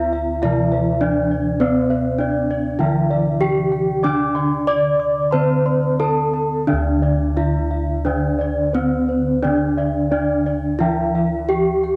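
Five parts begin together in this ceremonial, shimmering Javanese gamelan cut from a longer piece, in D slendro at 87-103 BPM in straight 4/4: an up-front bronze metallophone carries the melody with a ringing wooden-mallet tone and beating paired tuning, a dark, smooth horn-mallet metallophone supplies the accompaniment, round bossed gongs and a mid-forward metallophone spin high arpeggios, and mellow padded-beater gongs hold the bass, all set in moderate spring reverb and small-room ambience on a home cassette recording, with a new passage arriving at 6.7 s.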